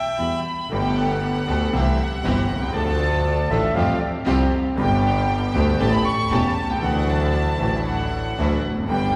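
A soft, floating violin section bowed sul tasto opens this dramatic, sultry tango fragment at a rubato 117 BPM in 4/4. A clear, vintage concert grand piano with deep bass joins it, along with a biting, earthy double bass played up front by one bowed player with light vibrato. A lush, distant string section adds stabs in the background from 0.7 s, and a smooth classical clarinet briefly joins as a second line at 3.3 s. Everything sits in the long, wet reverb of a church.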